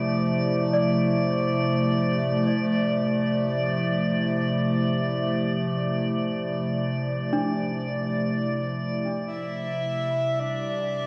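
Ambient music in free time, this short cut from a longer piece feels warm and weightless, tuned slightly low at A4 = 439 Hz. A warbly, tape-like pad sits up front with sustained, nostalgic chords, its detuned vintage tone softened by chorus and its own reverb. Behind it, a bell-like celesta plays delicate arpeggios through a diffuse ambient delay, while a drifting texture of glassy harmonics hovers calmly in a narrow high range. At 9.3 seconds the harmony moves from Dmadd9/C to Cmaj7, and a breathy, flute-like synth lead enters up front with a soft attack, vibrato and lush chorus. A wet concert-hall reverb with a 2.4-second decay gives the whole scene a spacious, floating sound.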